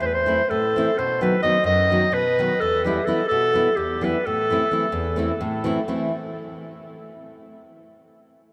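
A clarinet and a nylon-string guitar begin together in this short, fiery Balkan folk fragment in 7/8. The clarinet carries the virtuosic melody in a classical style, its warm, soft-attacked tone sitting up front yet sounding distant and roomy through a diffuse ambient delay. Beneath it, the fingerpicked guitar supplies deep, acoustic accompaniment, close and present, with audible finger squeak. The harmony moves from Am to B, then Em, and back to Am. The whole mix is soaked in a huge, dreamy reverb; the clarinet stops at 5.4 seconds and the guitar at 6.1 seconds, as the fragment cuts away from a longer piece.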